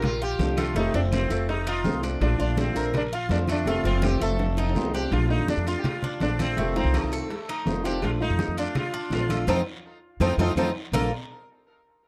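Warm and danceable, this Cuban son and guajira groove sets a buzzing, shimmering sitar melody over a bright, fingerpicked nylon-string guitar, while a metallic, double-strung Cuban tres adds picked arpeggios and a woody, thumpy upright bass sits up front on the Bbmaj7 and F7 changes. Behind them, low-tuned congas with a thick, damped skin and a raspy guiro sit in the background, while tight, high-tuned bongos, a ringing metal-shelled timbales and woody claves sound very quiet and distant, as if across a large room. A drum fill arrives at 3.7 seconds and a band accent lands at 9.5 seconds, all caught in a dry, close 1970s-style studio sound in a cut from a longer piece.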